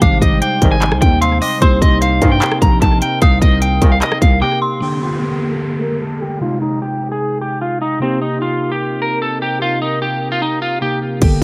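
Menacing and dark, this half-time trap excerpt puts a slightly broken-up, twangy electric guitar melody up front over mellow electric piano, an eerie detuned synth bell line, a warbling lo-fi pad and faint, distant brass stabs, with the guitar, piano and bell trailing tape echo in a lightly reverberant mix. A hard-clipped kick, crisp hats, handclaps, rim clicks and crash drive the trap kit alongside a growling, buzzy 808 bass until a break at 4.4 s. After that, a downlifter and a long filter sweep carry the guitar and piano, with the pad rejoining at 8.8 s, until drums and bass return at 11.2 s.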